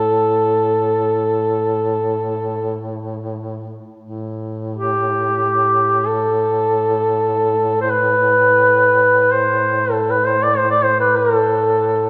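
This Caucasian folk lament unfolds in free time in A minor, tuned slightly sharp to A4 = 441 Hz, and carries a solemn, mournful mood across its 12.1 seconds, a fragment cut from a longer piece. A mellow duduk sings the melody up front from the first moment, moving between G4 and D5 with vibrato and scooped notes that give the line a vintage, folk-style character. Beneath it, a second duduk holds a drone on A2 for the full length, its present tone also shaded with vibrato and sitting well below the melody in level. The lament states its opening phrase, then returns to the same material at 4.0 seconds. A wet church reverb with a 3.0-second decay surrounds both instruments, lending the recording a spacious, sacred atmosphere.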